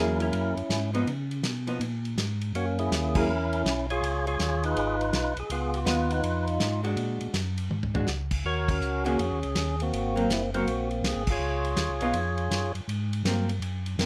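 Soul jazz organ trio in a greasy, soulful swing at 163 BPM in Db mixolydian, where a fat, lightly overdriven percussive organ carries the melody through slow rotary speaker and plate reverb until 12.7 seconds, a dark, clean hollow-body archtop guitar comps (dropping out briefly before returning at 5.9 seconds), a round, mellow second organ with chorus vibrato holds down the bass, and a small-room soul drum kit with dark cymbals and a tight kick adds a fill at 7.7 seconds amid band accents, all captured close and detailed with moderate studio reverb and a faint mains hum in this short cut from a longer piece.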